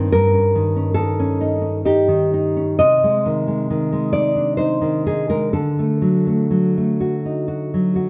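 A nylon-string guitar plays alone throughout this brief fragment of a romantic piece for solo classical guitar, its fresh strings giving a full-bodied, deep classical tone that sits up front in the sound. The mood is passionate and melancholic, moving in 3/4 at a rubato pace somewhere between 61 and 71 BPM. The thumb-plucked notes range from G2 up to Eb5, and a touch of finger squeak adds intimacy to the playing. The harmony passes from Eb7/G to Ab/C at 2.8 seconds and arrives on D at 5.5 seconds, lending the short passage a yearning, unresolved quality. A moderate recital hall reverb surrounds the guitar, giving it a natural sense of space as the fragment closes at 8.1 seconds.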